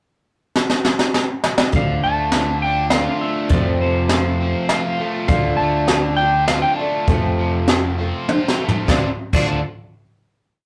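A brushed drum kit sets a 3/4 groove at 101 BPM, opening with a fill from 0.6 seconds before the bass and guitars arrive at 1.7 seconds for this short, dusty and reflective folk rock and heartland rock piece in D minor. Its boomy kick, high-tuned snare and dark cymbals sit up front, while a punchy fingered electric bass locked to the kick, a boxy, shimmering octave-doubled twelve-string acoustic guitar strumming open chords in sixteenths, and a bright, double-tracked overdriven guitar playing picked arpeggios carry the Dm and F changes. From 1.8 seconds a clean, compressed lap steel sings song-like slide phrases with volume swells above them, before a last drum fill leads to the final D minor chord at 8.9 seconds, all captured as a rough rehearsal-room recording with tube saturation and moderate reverb.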